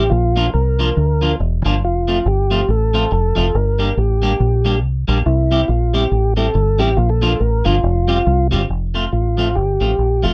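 A dark, dry production with little reverb gives this short ska excerpt a close, intimate sound. At 140 BPM in 4/4 with a swung eighth-note feel, the music is bouncy and cheerful, set in F major and moving through Bb, F, Gm and C before settling on Fsus2 and then F as a brief new section begins at 8.7 seconds. A tonewheel organ carries the melody, its clear tone lightly overdriven, with key click, vibrato and the slow churn of a rotary speaker. A clean, picked electric guitar sits up front in accompaniment with a warm, plain tone. Beneath them, a deep dub fingered electric bass, foam-muted and round, plays direct and amped, standing out as the most prominent part in the mix. All three play throughout the 10.3 seconds.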